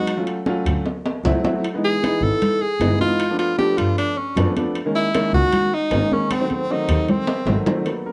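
Afro-Cuban jazz at 154 BPM, fiery and sophisticated, where an up-front tenor saxophone with light vibrato and scooped notes carries the melody over rootless piano chords from a concert grand, ringing high-tuned congas, and metal-shell timbales, with drum fills at 0.9 and 6.3 seconds and a bowed double bass with portamento entering at 0.7 seconds, all heard through a club room and the warbling pitch drift of worn cassette tape in this short cut from a longer piece.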